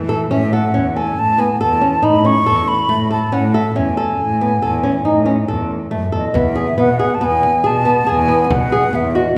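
A mellow, hollow silver concert flute carries the melody up front, its tongued notes shaded with vibrato and an airy, metallic sheen. This passage of contemporary chamber music moves at 139 BPM in an uneven 7/4 with a straight feel, set in A lydian, and its mood is restless yet hopeful. Beneath the flute, a flamenco guitar fingerpicks dark arpeggios with audible finger squeak, while a single muted cello bows a veiled, boxy bass line with soft attacks, portamento and vibrato. The harmony moves from Aadd9 to Amaj7 before settling on E at 6.4 seconds, where a deep frame drum struck with hard hands joins in the background, close and dry, until 8.8 seconds. The ensemble sits in a reverberant recital hall, giving it the ambience of a church or concert hall.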